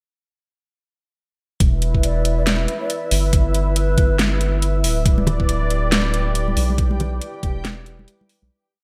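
The recording has a bright, 1980s-style digital sheen and very little reverb, giving this short, complete deep dubstep piece a dark, heavy mood over a half-time, swung groove. The drop lands at 1.6 s with an up-front, tape-warm kick with a knocking punch, a layered kit with a huge snare and metallic hats, a round, deep sub bass holding long notes, and a moody, detuned sawtooth pad sustaining chorused chords over E minor. A breathy, hollow low ney floats in the background with short, mellow, echo-treated phrases. Later, close and dry congas with a thin, bright skin add soft hand patterns, while a reversed, granular texture holds a dreamy high note far behind the mix. The piece fades out from 6.2 s.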